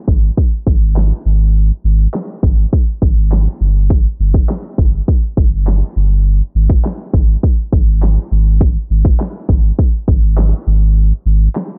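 A straight 4/4 dance-pop pulse drives this carefree, euphoric fragment cut from a longer piece, where an up-front electronic pop drum kit of handclaps, hi-hat, a punchy kick and a fat snare plays alongside a deep, round sine sub bass that pumps with sidechain compression, all heard dry under a low-pass filter with a filter sweep running from start to finish at 11.8 seconds.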